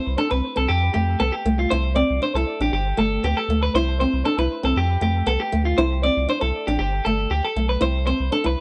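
A straight 4/4 highlife groove at 118 BPM drives this danceable, joyful passage in C major, cut from a longer piece and cycling through Fadd9, C and G. A bright, twangy clean electric guitar plays picked arpeggios up front with analog delay, over a small, fingerpicked nylon-string guitar accompaniment. A deep, round sine sub bass with a fast attack and sustained notes enters at 0.1 s and sits forward in the mix, and light reverb adds a touch of space.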